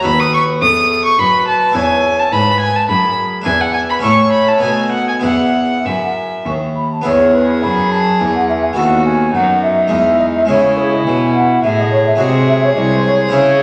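A dark, up-front violin, a rich cello and a full, plucked harpsichord open together before a mellow wooden flute enters at 0.1 seconds with the melody, played with vibrato and a tongued, somewhat distant, expressive voice. This serene, dance-like baroque-style sonata movement in triple time, heard as a cut from a longer piece, sets the violin's gut-string second line with its smooth top above the cello's reedy bass and the airy Flemish-style harpsichord continuo, moving into a new section at 7.1 seconds. The sound sits in a wet recital hall reverb with a layer of vinyl crackle.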